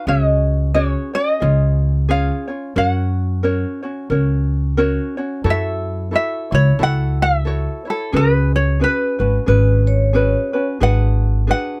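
Hawaiian music, relaxed and sunny, set at 89 BPM in 4/4 with a swung eighth-note feel, this excerpt moves from F# major into F# minor at 5.5 s. A light, fingerpicked tenor ukulele carries the melody up front over a second fingerpicked ukulele's accompaniment, while a woody, growly pizzicato upright bass with steel strings sits prominently in the mix. At 9.5 s a metallic, ringing vibraphone played with medium mallets and motor vibrato adds a brief second line, all captured with close, detailed microphones and little reverb.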